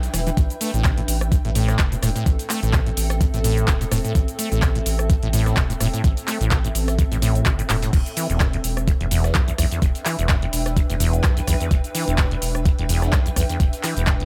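Trippy and raw, this fragment of swung 127 BPM acid house pairs a squelchy, resonant sawtooth acid riff, drenched in lush chorus and dub echo, with a deep, round analog bass and a blurred, evolving granular cloud pad, both pumping to the sidechain, over a thumpy up-front electronic kick from 0.4 seconds, a dry electro drum machine with metallic hats, claps, rim clicks, shaker and crash, and a very quiet, gritty, tape-toned soul sampler kit, moving from Am7 to Em7 around a drum fill at 7.7 seconds in an echo-heavy digital ambience.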